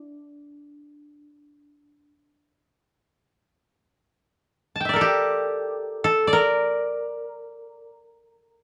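Japanese traditional chamber music in free time, this brief excerpt presents a solo koto in a meditative, still mood, its dry, woody tone played with fingerpicks and placed up front, sounding from D4 to A5. A moderate studio reverb surrounds it, while the worn cassette tape adds a warbling pitch drift to the recording. The koto plays alone from 0.0 to 8.6 seconds, tuned to A4 = 439 Hz.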